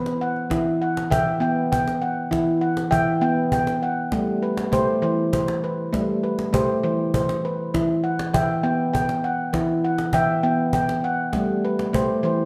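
A resonant, reverberant space holds this meditative, hypnotic world piece for tuned percussion, cut from a longer work in a slow 6/8, where a bright, ringing nitrided-steel handpan sits up front with sharp finger strokes, tracing arpeggios over Em and Am chords from E3 up to G5, while a woody cajon with faint snares plays softly beneath from start to finish.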